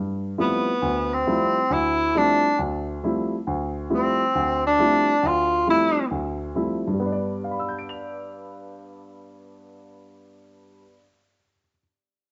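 A clear tenor saxophone takes a jazz-style solo from 0.4 to 6.1 seconds, its vibrato and scooped notes carrying a cassette-tape tint in this spiritual, open swing jazz excerpt at 136 BPM in G mixolydian. A warm baby grand piano with short sustain plays accompaniment throughout, moving from a suspended G13sus4 to a plain G chord at 7.0 seconds. The home cassette recording sits in moderate studio reverb, with a dulled top end.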